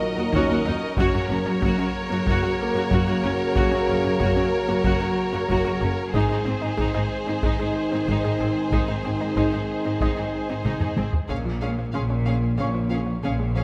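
A moderate scoring-stage reverb gives depth to this vast, brooding hybrid orchestral and electronic film cue at 93 BPM in a straight 4/4, moving from Eb minor through Gb and Ab before landing on Db over Bb at 11.3 seconds. Lush bowed strings carry it: a clear, intense violin section holds the melody above a soft-attack, expressive second violin line, while focused violas sit in the background, and smooth-topped cellos and rich double basses anchor the bass. Punchy French horns and tight trombones sustain chords until 10.9 seconds, and close taiko with heavy sticks drive the cue and play a fill just before the change. Beneath them, a very quiet detuned sawtooth pluck with ring modulation and chorus runs arpeggios, and a muted, mellow felt upright piano adds intimate texture with audible action noise.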